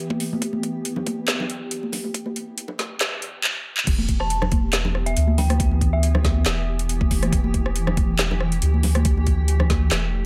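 A round, deep dub sub bass sits up front in this cavernous, meditative deep dubstep cut in E minor at 139 BPM, felt in half-time with a light swing, while a blurred, evolving granular cloud pad holds sustained chords beneath it. An overdriven, knocking electronic kick and an overdriven garage kit with a woody snare, metallic hats, claps, rim clicks and crash drive the groove, joined by close, dry, high-tuned congas. A filtered build-up and a short drum fill lead into the drop at 3.9 seconds, and at 4.2 seconds an eerie, inharmonic detuned synth bell appears, touched with chorus and dub echo, all set in a light digital ambience.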